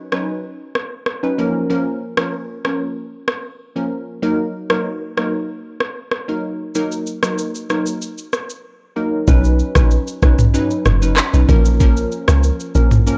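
A dry, gritty cassette-tape sound with digital ambience frames this mellow, hypnotic afrobeats excerpt at 95 BPM in Eb minor, where a crystalline, detuned wavetable pluck with chorus, ring modulation and a moving notch rides up front over an electronic afro-pop kit of knocking kick, handclaps, rim click, shaker and toms re-recorded in a large room, and at 9.3 s a deep, round, dark log drum bass joins them and carries the chords from Badd9 to Bbm to the close.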